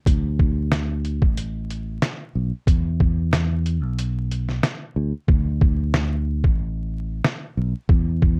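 A fingered electric bass, punchy and up front, and a compressed, pitched-down, tape-toned sampler-style drum kit with a thumpy kick and medium-tuned snare start together in this moody, gritty boom-bap hip-hop excerpt, swung on the sixteenths and set in dark, dry production with vinyl crackle, pausing for a break at 4.0 seconds before the hi-hats fall silent from 5.3 seconds.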